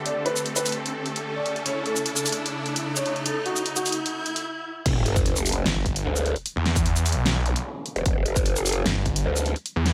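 Huge, airy supersaw chords open this aggressive, heavy wobble dubstep excerpt in E minor at 150 BPM, their detuned sawtooth layers pumping under sidechain compression and a low-pass filter as they move from Gsus2 to A. Electronic riser effects build beneath them while a soft, felt-muted upright piano plays an intimate, mellow melody through a delay, and a big-room dance kit with a huge, up-front snare, hi-hat, shaker and crash cymbal drives the build-up in a half-time feel. A brief stop at 4.5 seconds gives way to the drop at 4.9 seconds, where the sub drop and zap effects carry into the impact, a punchy layered electronic kick arrives, and a growling, wobbling bass with a formant filter, chorus and overdrive takes over on an E5 chord. From 5.7 seconds a snarling, detuned sawtooth bass with a moving notch and distortion stacks on top, making the low end even more saturated and bright. Light digital reverb and small-room ambience on the drums keep the mix tight and forceful.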